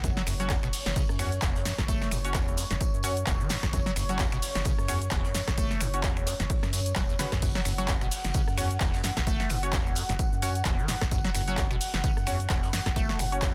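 A dense, heavily limited and nearly dry mix carries this trippy, hypnotic acid house cut in F# minor at 130 BPM, swung on the 16ths, where a punchy electronic kick and a tape-warm analog drum machine with snare, handclaps, finger snaps, rim click, hi-hat, cabasa and crash drive the groove over a very quiet, mid-forward brush kit adding hi-hat, snare and tambourine. A squelchy, resonant square-wave acid bass riff, washed in lush chorus, cassette grit and delay, pumps against the sidechain alongside a round, deep analog bass and a moody, detuned sawtooth pad holding sustained chords. From 0.4 seconds a nasal, band-passed chord stab with a bright, plucky filter snaps in, treated with chorus and delay.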